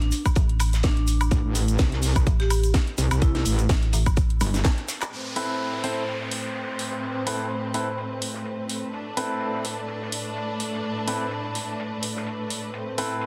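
This bouncy, gritty bass house excerpt in A minor opens straight into a drop at 126 BPM, with a swung 16th-note feel. A ringing vibraphone, played with hard mallets and touched by digital delay, carries a short melody over a dark FM bass that pumps against the tight, up-front electronic kick. A garage kit adds handclaps, hi-hat, woodblock and a cracking, softly clipped snare. Underneath sit a very quiet, cloth-damped acoustic kit and a grainy tube shaker in the background. At 1.3 seconds an aggressive, distorted wobble bass with a metallic edge joins, thickened by chorus and tube saturation, and a drum fill arrives at 4.6 seconds. At 5.1 seconds the harmony shifts to Amadd9 as a lush, bowed symphonic string section enters with sustained chords, an electronic downlifter falls beneath it, and a brilliant grand piano with long sustain and audible action noise punctuates the dense, heavily limited mix with delayed stabs.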